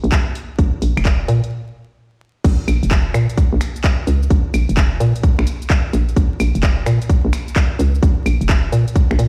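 Vinyl crackle sits over a sound that sets the track in a bare room through a big sound system, in this soulful, late-night slice of swung two-step UK garage cut from a longer piece. Up front, a hollow, bouncy FM bass with tube saturation knocks out punchy, fast-attack, decaying notes, while a tight, tape-warm electronic kick and a layered house kit of claves, crash, finger snaps, handclaps, shaker and warm hi-hats carry studio reverb. A stop at 1.5 seconds gives way to the drop at 2.4 seconds.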